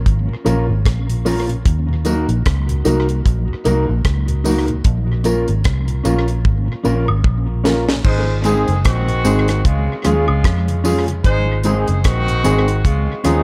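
A laid-back, serious roots reggae groove at 75 BPM in 4/4 with a swung sixteenth feel in Eb dorian, built on a dark, round, foam-muted fingered electric bass up front and a dry, deep drum kit with a high-tuned snare, tight kick, rim clicks, hi-hat, crash and tape echo, dressed by a very quiet flute-like tonewheel organ with chorus vibrato and key click, a clean, dark guitar soaked in tape echo, woody, slightly detuned upright piano stabs, close tambourine and woodblock, and a drum fill at 6.4 seconds leading to a distant, roomy horn section entering at 8.0 seconds as the chords move from Bbm and Ebm to Ab and Db in this echo-heavy fragment of a longer piece.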